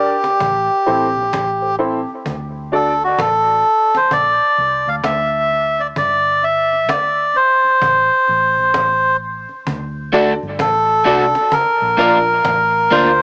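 Swung sixteenths in 4/4 drive this meditative, heavy dub reggae excerpt, where a reedy, nasal melodica carries the melody up front with dub echo and cassette tape colour over a snappy, hard-handed cajon and a dark, round, foam-muted electric bass, while a worn, woody, slightly detuned upright piano drops echoing stabs at the opening and again from 10.1 s, joined there by a slightly broken-up, picked electric guitar, the mix captured as a small-speaker home cassette recording with light reverb.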